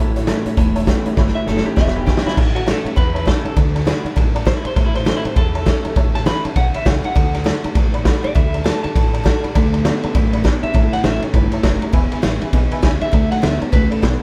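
Punchy, gritty garage drums lead this upbeat, rollicking rockabilly excerpt at 201 BPM with a swung feel in A mixolydian, as a twangy tremolo lead guitar carries the melody over a growling overdriven fingered bass, a jangly detuned honky-tonk piano, a full-bodied picked acoustic guitar, and a dark, compressed spring-reverb guitar riff that drops out at 2.3 seconds and returns at 9.5, all captured live in one room.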